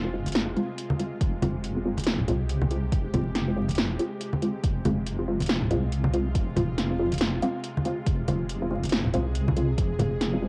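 A hazy, lo-fi sound frames this brooding, meditative slice of deep dubstep, recorded at home onto cassette with vinyl crackle and a light reverb around it. At 140 BPM in 4/4 with a half-time feel and swung sixteenths, it rests on a single F minor chord throughout. A tense, string-like drone sustains chords from the first moment, its detuned sawtooth voice carrying vibrato, a noise layer and a bright sheen wrapped in its own reverb and tape character. Alongside it, a muted dub chord stab plucks dark, decaying sawtooth chords through a phaser, lush chorus and dub echo, while a filter sweep keeps its moving notch evolving across the whole stretch. Underneath, a deep, soft wobble bass sits up front, compressed, detuned and chorused, with a dark, sustained low end. The overdriven house kit enters at 0.3 seconds with a punchy snare and metallic hats, soft-handed acoustic congas play close and dry, and an overdriven electronic kick joins at 1.2 seconds to anchor the groove.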